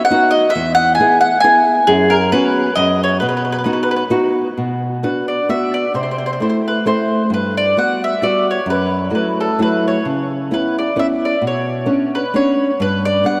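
Italian folk in the manner of a serenade, this short excerpt from a longer piece moves in a swaying three-beat time with a lightly swung lilt, wistful and passionate in mood. A picked mandolin carries the melody, its doubled strings giving a round, up-front tone touched by an analog delay. Beneath it, a fingerpicked nylon-string guitar supplies the accompaniment with a woody, small sound from old strings, sitting close and intimate. The harmony opens in bright major chords before turning toward minor shades around 4.6 seconds, drifting through colorful sixth and seventh chords that deepen the longing. Everything floats in a huge, dreamy reverb with a long four-second tail, so the whole mix feels soaked even as both instruments stay forward.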